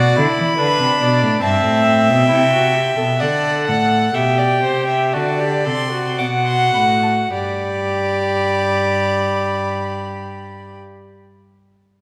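The reverberant wash of a scoring stage surrounds this stately, elegant excerpt of a baroque-style fugue in G major for string quartet, slowing from around 74 BPM in 4/4 over its first 7.3 seconds as period-style gut-string players bow throughout: a lightly vibrato-tinged high violin melody, a close, up-front reedy second violin line, a distant viola accompaniment, and an up-front cello bass, moving from B minor through C over G and a suspended D7 to a resolution on G at 7.3 seconds.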